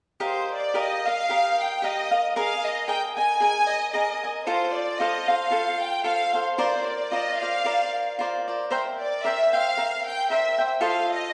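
A lightly swung 4/4 pulse at 113 BPM drives this proud, festive piece of Mexican folk music in the mariachi tradition, set in Eb major. A rich, focused violin section carries the melody up front, its bowed ensemble tone shaded with vibrato and sitting between C5 and Ab5. Beside it, a bright acoustic cavaquinho supplies crisp, picked accompaniment, also up front, ranging from F4 to Ab5. Both parts play together from 0.2 to 11.3 seconds through a chord sequence of Ebadd9, Absus2, F, Bbadd9, C7 and F7. The sound carries the wet reverb of a recital hall or church, and the passage is cut from a longer piece.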